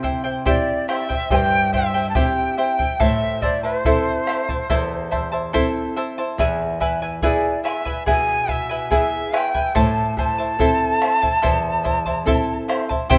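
A breathy wooden quena carries the melody from 0.5 s to 12.6 s, sitting up front with a reedy, chiffy attack and vibrato, though its tone also has a faintly distant quality. Beneath it, a shimmering charango with double strings, some doubled at the octave, is fingerpicked close to the listener. A small, fingerpicked nylon-string guitar adds lower accompaniment, and a round bombo sounds from a large room in the background. This earthy, festive Andean folk passage sits in an unhurried straight four, cycling through C, A minor and E before settling back on A minor. Light reverb and a rough home demo mix give this fragment, cut from a longer piece, an informal, unpolished feel.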